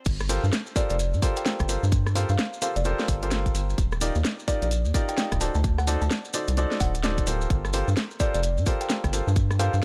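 UK garage in a two-step vein, this bouncy, skippy excerpt sits at 129 BPM in G minor with a swung sixteenth-note feel, and it stays in a single drop from the start to about 9.8 seconds. A rubbery, hollow square-wave bass with a resonant filter pluck and dark, tube-saturated tone sits up front, pumping against a tight electronic kick that also holds the foreground. A layered garage kit adds a cracking snare, rim clicks, crash cymbal and warm hats, all thinned by high-pass filtering, while grainy, mellow maracas tick quietly underneath. An intimate baby grand piano, its action noise audible, plays short stabs with dub echo through a progression of Gm11, Ebmaj9 and D7b9 before returning to Gm11 at 7.5 seconds. From 0.8 seconds a woody, vintage-sounding kalimba carries the melody high above, its short thumbnail plucks also trailing dub echo. The mix is dry and close, with little reverb, giving the groove a tight presence.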